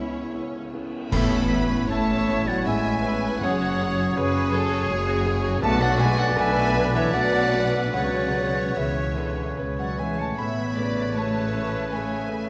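Tender and moving, this rubato cinematic film-score excerpt in 3/4 at 73-82 BPM has lush bowed violin sections carrying the melody and a second line over a felt-muted upright piano, clear violas, mellow French horn chords, ringing harp arpeggios, a dark double bass section and expressive cellos, with a bright clarinet from the start joined at 1.1 seconds by an airy silver flute and a background oboe as dark clash cymbals, bass drum and round soft-mallet timpani mark a brief accent, all set in a moderate scoring-stage reverb.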